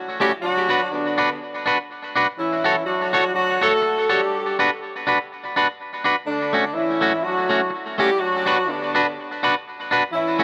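A moderate studio reverb gives this short ska excerpt a roomy sheen, with both parts sitting up front and touched by tape echo. At 124 BPM in 4/4 with a light swing on the eighths, the mood is upbeat and bouncy, settled in D major. A mellow horn section carries the melody from 0.2 seconds, punchy yet distant, with light vibrato and octave doubling across its range from D3 to A4. Alongside it, a clean electric guitar plays accompaniment, its picked tone bright, twangy and scooped. The harmony moves from Bm through Dmaj7 and D6 before returning by way of Dmaj7 to Bm near 8.2 seconds.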